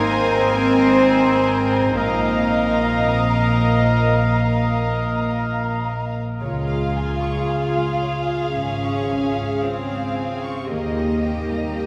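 Cinematic film score for orchestra, emotional, hopeful and tender, moving at a slow, rubato 55 BPM in 4/4 with a Db lydian colour, cut from a longer piece. A chamber violin section carries the melody with light vibrato and a soft, intimate sul tasto tone, while a symphonic violin section floats in the background on a second line, joined until about 6 seconds by a clear solo clarinet, a distant, roomy oboe and a mellow, hollow silver flute holding Bb5. Violas supply soft, pure accompaniment, a very quiet, dark French horn section sustains chords with a smooth top, and a bright concert harp rings out fingerpicked arpeggios behind them. The low end is anchored by a prominent cello section and a rich double bass section, both bowed sul tasto with a floating quality. Harmony drifts from Abadd9 and Ebsus2/Bb to Db at 6.4 seconds, then settles on Eb, and the whole ensemble sits in a wet cathedral reverb with a long tail.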